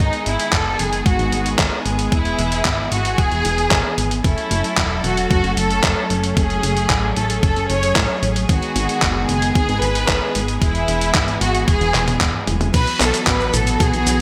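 Italo disco with a melodramatic, nostalgic air, this short excerpt pairs a rich, expressive violin section carrying the melody through delay and shimmer reverb with a clear symphonic string section holding sustained chords, all over a glossy, chorused synth bass with a filter pluck. A thumpy electronic kick joins a gritty, overdriven sampler-style kit that sits up front with gated reverb, cabasa, handclaps, hi-hat, crash and toms, and a drum fill from 11.9 to 12.7 seconds leads into a closing Bsus4 chord. The bright 1980s-style digital production is wrapped in moderate plate reverb.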